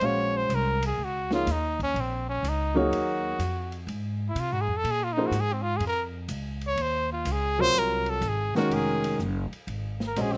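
Modal jazz with an intense, searching mood, this swung fragment of a longer piece features a warm trumpet soloing with light vibrato and slapback echo over an intimate grand piano whose action noise can be heard, a woody, growly pizzicato upright bass, and a softer acoustic drum kit with a punchy kick, dark cymbals and a rolled-off top, all captured dry and close as the harmony moves from Ebm9 to Fm at 3.9 seconds.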